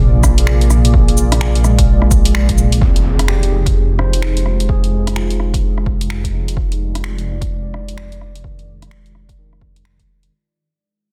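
A melancholic, wistful future garage excerpt cut from a longer piece, moving with a swung 4/4 groove. A dark detuned saw bass sits up front with a deep, rumbling, beating tone under sidechain pumping. A moody, wave-folded ambient pad holds sustained chords with slow attack and long release, bathed in chorus and its own reverb. A clean tine electric piano plays accompaniment through a combo amp with medium tremolo, pumping, a low-pass filter and analog delay, and a filter sweep runs over it from 2.8 s as the music moves from Bb7 to Fm7. A punchy, layered electronic kick and a deep house kit of cabasa, finger snaps, hi-hat and rim click come in at 0.2 s with studio reverb, while a very quiet electronic impact marks the shift at 2.8 s. The dense, heavily limited modern master carries a digital ambience, and a fade-out runs from 2.8 s to the end.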